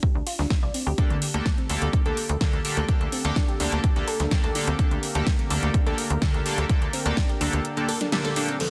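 Expansive and dreamy, this progressive house excerpt moves at 126 BPM in a straight 4/4, opening on a D7 chord with the third omitted before shifting to Gmadd9 over D at 1.0 seconds. A punchy, overdriven electronic kick sits up front alongside a tight, nasal sequencer bass with sidechain pumping, while a pop drum kit adds a fat snare, metallic hats and crash cymbal with its own overdrive. A glassy, crystalline wavetable pluck spins arpeggios across D3 to D5 through chorus, phaser and digital delay, its filter sweep running until 8.6 seconds. A retro, glossy polysynth plays chorused stabs with delay, and a smooth, warbling analog pad holds sustained chords in the background. The kick drops out at 7.6 seconds, a band accent hits at 8.1, and at 8.6 a round, dark octave-layered lead touches an A4 with tremolo and vibrato as a downlifter sounds, all in light digital ambience under a dense, heavily limited modern master.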